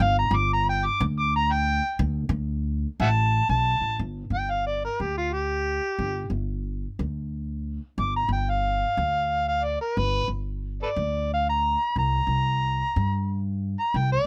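Dry, close-miked and detailed, this excerpt of soulful, gritty acoustic country blues swings at 121 BPM in 4/4. An amplified, overdriven harmonica sits up front with vibrato, tongue slaps, soft attacks and scooped notes in a jazz style, taking a solo in the opening 4 seconds. Beside it, a woody, thumpy pizzicato upright bass with steel strings carries the low end as the harmony moves through G5, D5, G5 and C5.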